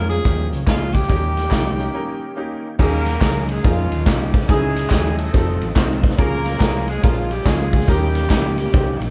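Jubilant and hopeful, this brief swinging uptempo gospel excerpt opens with a breathy, distant tenor saxophone melody over bright grand piano, a gritty overdriven tonewheel organ with slow rotary speaker, a round, dark hollow-body electric bass, a punchy up-front big-band drum kit and background tambourine and handclaps, before a break at 1.9 seconds gives way to a mellow, tight horn section in octave doubling taking the melody from 2.8 seconds, all in a band playing live in one room with light reverb.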